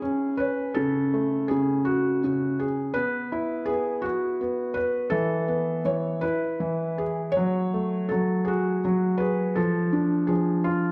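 A gentle, innocent children's lullaby in 6/8, this brief excerpt from a longer piece drifts at a rubato 55 beats per minute, counted in dotted quarters and tuned slightly below standard pitch. A felt-muted upright piano plays alone for the full 10.9 seconds, ranging from C#3 to C#5, its tone soft, mellow and intimate, sitting up front in the mix. A slapback echo trails the piano, while a moderate recital hall reverb with a 1.4-second decay gives the dark production a sense of space. The harmony opens on C#m, moves through F#madd9/C# and suspended chords on B and E before resolving to E at 6.2 seconds. It then reaches F#madd9 and ends on Dm/F at 9.6 seconds.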